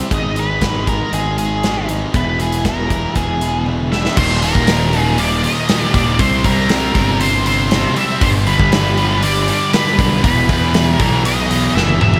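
A big, up-front rock drum kit with a punchy kick and crashing fills drives this restless, bittersweet quiet-loud alternative rock fragment, where a twangy twelve-string electric guitar shimmers through tremolo and tape echo in arpeggios until 4.2 s, a biting overdriven guitar riffs in the background, a dark octave-fuzz lead guitar sings the melody over a growly fuzz picked electric bass, and from 4.2 s a sludgy distorted guitar and a very quiet, double-tracked high-gain distorted guitar thicken the riff, all set in a lush hall reverb with an arena-sized sound.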